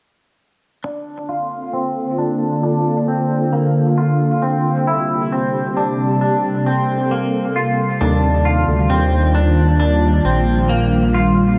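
A straight 4/4 pulse at 67 BPM carries this ethereal, floating dream pop fragment in Bb major, where a bright, twangy clean electric guitar starts arpeggios at 0.8 s through analog chorus and delay, and a slow-attack, airy pad joins at 1.5 s with sustained detuned chords soaked in ensemble chorus. The harmony moves from Bbmaj9 to C7 to Ebmaj9 while a filter sweep runs throughout. A glossy, retro chorused synth bass with a plucky pulse-wave edge arrives up front at 8.0 s, all set in an echo-heavy mix with a moderate plate reverb.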